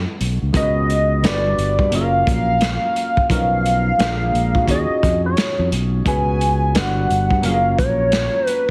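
A hollow, woody square lead with chorus and vibrato carries the melody up front from 0.6 seconds, floating over a sensual neo-soul R&B groove in F# major at 87 BPM with a swung sixteenth feel. Beneath it, a fingered electric bass and a natural-sounding grand piano open the cut, moving through lush chords such as C#7sus4, Gmaj7 and Bmaj9#11. A crunchy, saturated breakbeat kit with a tight kick and gritty, rolled-off top enters at 0.2 seconds, and the whole mix is dry and heavily compressed, giving a radio-like sound.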